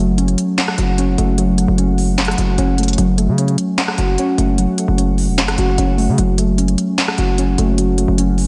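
Trap-flavored hip hop at 150 BPM in a half-time feel, this menacing, eerie excerpt sits on a single F# minor chord. Warbly lo-fi synth keys carry the accompaniment from the start, their detuned pulse and sawtooth tones sounding nostalgic and full-bodied, darkened by a low-pass filter and thickened with chorus. A hard-hitting 808-style bass sits up front alongside them, punchy and heavy, its sine body edged with a noise layer and a fast attack that decays away. The trap drum kit arrives at 0.2 seconds, set a little lower in the mix, with a sharp snare, crisp hi-hats, handclaps and rim clicks roughened by vintage 12-bit sampler grit. A moderate, lush hall reverb with a 1.7-second decay soaks the mix in dreamy digital ambience until the cut at 8.5 seconds.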